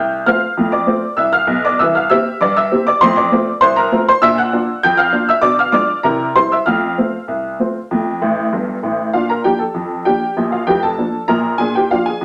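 A straight, even two-beat pulse drives this cheerful, lively ragtime fragment, cut from a longer piece and played at a moderate, bouncing pace. A lone honky-tonk upright piano carries everything from 0.0 to 12.2 s, sitting up front and ranging from deep bass notes to high treble. Its detuned, jangly voice has a vintage character, bright yet natural, with short sustain that keeps each note crisp. The opening section moves through a classic rag progression, passing through a diminished chord before settling home, and a quick piano fill at 8.2 s leads into a new section at 9.1 s. A wet studio reverb gives the piano a sense of room around it.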